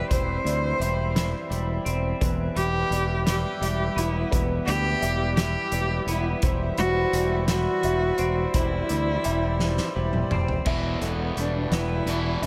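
Post-rock in E minor, this melancholic, brooding cut from a longer piece moves at a slow 57 BPM in a straight 6/8, its chords shifting between C/E and Em. A dark, woody cello carries the melody up front, bowed by one player with vibrato and trailed by delay, while a reedy, breathing pedal harmonium holds sustained chords in the background. Alongside them, a felt-muted upright piano adds soft, intimate arpeggios with audible action noise and delay, and a clean twelve-string electric guitar picks compressed arpeggios through lush chorus and delay. A growling fingered electric bass with overdrive and a loose indie drum kit, pairing a fat snare and punchy kick with dark cymbals in a pumping room, sit up front, and the drums play a fill from 9.6 to 10.7 seconds. At 10.7 seconds a bright, crunchy overdriven guitar enters with a picked riff as the harmony settles on Em. The whole mix is dreamy and soaked in a cathedral reverb.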